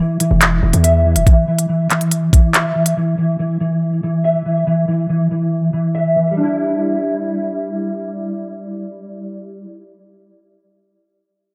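This menacing, tense drill excerpt moves with a half-time feel, built around a mellow electric guitar playing arpeggios throughout. The guitar is dark, clean and fingered, with compression, ensemble chorus, a low-pass filter and delay that give it a hazy, shadowy sheen up front in the mix. An electronic drum kit enters at 0.2 s with a knocking kick, crisp hi-hats and handclaps, and drops away at 3.0 s. Briefly alongside it, a hard-hitting 808-style bass lands punchy and heavy, its sine tone layered with noise, with a fast attack that then decays. After the drums fall out, the guitar carries on by itself, and the harmony settles onto Em7 at 6.4 s in a second section, all in a light reverb.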